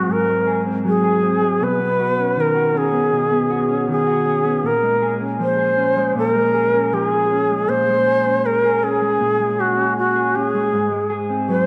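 A straight 4/4 pulse at 79 BPM carries this hazy, ethereal dream pop fragment in Bb minor, where an airy, reedy shakuhachi with vibrato and analog delay sings the melody alongside dark, clean, fingered electric guitar arpeggios soaked in analog chorus and delay, both parts sitting up front for the full 11.7 seconds in an echo-heavy mix of wet spring reverb and a small room.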